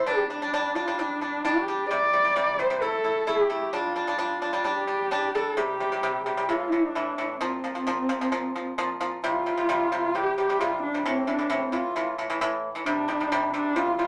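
A dark, husky horsehead fiddle carries the melody up front with vibrato and portamento, while a dry pipa played with fingerpicks spins bright, percussive arpeggios beneath it, opening this proud, galloping Mongolian folk excerpt at 131 BPM in a straight 4/4 and the C zhi mode. At 9.2 seconds a low bamboo xiao enters in the background as a distant second line, its pure, reedy tone tongued and shaded with vibrato. A wet club reverb surrounds the ensemble, and the passage breaks off at 14.1 seconds as a fragment of a longer work.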